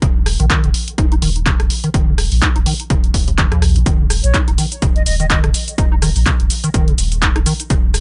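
Raw and driving, this acid house excerpt runs at 125 BPM with a swung 16th-note feel, built on a squelchy, resonant square-wave acid bass riff with overdrive, chorus, cassette grit and a filter sweep, a deep, round sub bass with tube saturation and sidechain pumping, an overdriven, punchy kick up front, and an analog drum machine of handclaps, hi-hat, rim click and shaker, while a pure, expressive concert flute with vibrato and tape echo slips in briefly from 4.2 to 5.4 seconds, all captured as a dry, gritty hardware recording.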